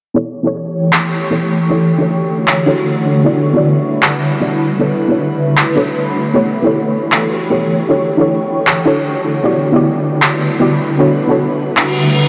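A lightly swung half-time groove of overdriven, up-front electronic handclaps carries this lush, dreamy future bass fragment, where a soft, round pluck under a filter sweep plays accompaniment alongside a shimmering, ethereal pad of sustained chords with chorus and phaser, the whole mix drenched in huge ambient reverb until a reverse cymbal arrives at 11.9 seconds.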